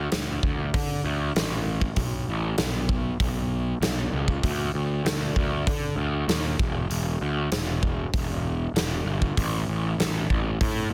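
Quiet-loud alternative rock in a straight 4/4, bittersweet and restless, cut from a longer piece and running about 10.9 seconds. A fuzz-drenched picked electric bass, overdriven, growly and bright, sits up front from the opening moment, spanning E1 to D3, while a big acoustic rock kit with a tight kick, medium-tuned snare and hi-hat enters at 0.1 seconds with a natural, big-room character. The sound is dry and dense, pressed hard by a heavily limited modern master.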